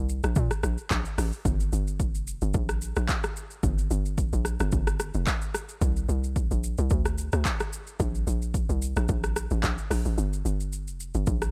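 A lightly swung sixteenth-note groove in 4/4 drives this hypnotic, late-night amapiano clip, taken from a longer piece, with a hollow, bouncy log drum bass sitting up front from the start, its fast-attack, decaying FM tone carrying a noise layer. From 0.1 seconds a layered electronic deep house kit joins with a punchy kick, metallic hi-hats, handclaps, rim clicks and shaker, all pushed forward and roughened by overdrive. A brief break arrives at 10.2 seconds in an otherwise dry mix.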